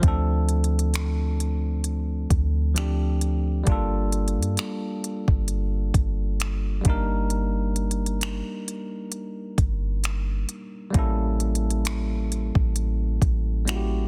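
Late-night and longing, this slow contemporary R&B excerpt in G minor moves at 66 BPM with a gentle sixteenth-note swing, as a bright, bell-like tine electric piano lays down chords from Dm7 through Gm9 and Ebmaj7/G to A7b9 over a deep, round 808-style bass and a smooth electronic drum kit of finger snaps, hi-hat and soft kick, its snare overdriven and softly clipped, all up front in a dry, dense, heavily limited modern mix.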